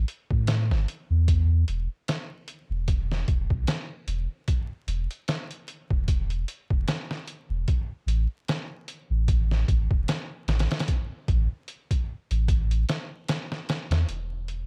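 Vinyl crackle sits beneath this dark, cinematic trip hop fragment, set at 75 BPM in 4/4 with a light 16th-note swing. A deep, round sine sub bass sits up front from the start, sustained and mellow, spanning E1 to A2. A gritty, pitched-down sampler-style drum kit enters at 0.1 seconds with a thumpy kick, a medium-tuned snare and filtered hi-hats, its compressed, tape-warm sound touched by studio ambience, and both parts run until 14.7 seconds.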